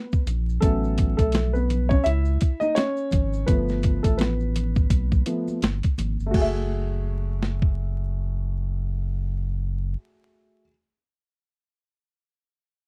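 A dark, mellow concert grand piano leads this smoky, cool jazz-hop fragment, taking a solo across its first 6.3 seconds with a vintage tone and short sustain as the harmony moves through A69, G9 and F#m9. Beneath it, a gritty, compressed boom bap drum kit with a pitched-down, sampler-style character sits up front, pairing a thumpy kick and high-tuned snare with hi-hat and crash cymbal in a swung sixteenth-note feel before dropping out at 7.8 seconds. A deep, full sub bass with an octave layer, its sine and triangle tone fast in attack and sustained, holds the low end until 10.0 seconds. Bright acoustic maracas and congas with hard hands play along in the background, in a small room. The whole recording is dry and close in a 1970s studio style, dusted with vinyl crackle, and the piano carries on until the cut at 10.7 seconds.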